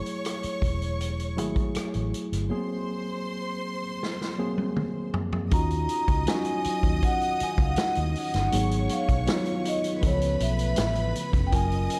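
A lush string section and a worn, lightly overdriven tine electric piano open this smooth, 80 BPM 1970s-style soul fragment, soon joined by a punchy up-front vintage drum kit and a round, foam-muted fingered bass; after a drum fill at 4.0 seconds, a mellow soft-mallet vibraphone takes the melody at 5.5 seconds over very quiet shimmering string-machine violin chords, all set in a dark, small-room production.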